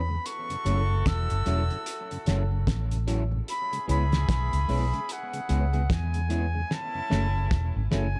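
Lovers rock reggae at 74 BPM in 4/4, with a gentle sixteenth-note swing and a tender, romantic mood, heard as a short excerpt from a longer piece. A reedy, airy silver flute carries the melody in a straight tone with tape echo, while a dark, foam-muted fingered bass sits up front beneath it. A cloth-damped, thuddy drum kit with a fat snare, tight kick and gritty, saturated character holds the groove, and an electric guitar at the edge of break-up adds twangy stabs, also through tape echo. Further back, a mellow tonewheel organ with key click turns through a slow rotary speaker, a clean tine electric piano fills in softly, and a clear, punchy horn section with light vibrato plays a second line. The harmony moves from F#m7 to C#m7 and back to F#m7 at 6.7 seconds, where a drum fill runs to the end in a small, lightly reverberant room with a dark production.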